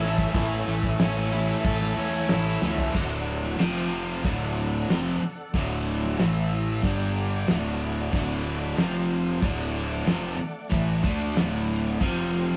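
A driving, confident classic rock excerpt at 92 BPM opens with a bright distorted electric guitar riff up front, a sludgy overdriven second guitar riff in the background, growly fuzz fingered bass, a dry, dark 70s drum kit with a fat snare and tight kick, thick tonewheel organ chords through a slow rotary speaker with chorus vibrato, and a boxy picked acoustic archtop guitar with finger squeak that drops out at 3.0 s, just after a drum fill at 2.6 s, captured as a rough rehearsal-room recording with moderate stone room reverb.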